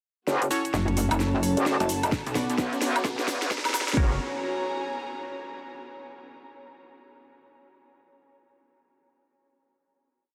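Gritty, aggressive bass house piece in which a metallic, overdriven wobble bass and a heavy, pulsing pluck wobble bass sit up front with sidechain pumping over a garage drum kit of cracking snare, cabasa, woodblock and hats, while a deep, moody analog pad, dark sul tasto studio strings, a dry, woody marimba, nasal band-passed chord stabs with phaser and delay, and a background riser fill a dreamy, reverb-soaked build that a punchy electronic kick joins at 2.1 s, before the strings carry the final chord through to 5.8 s.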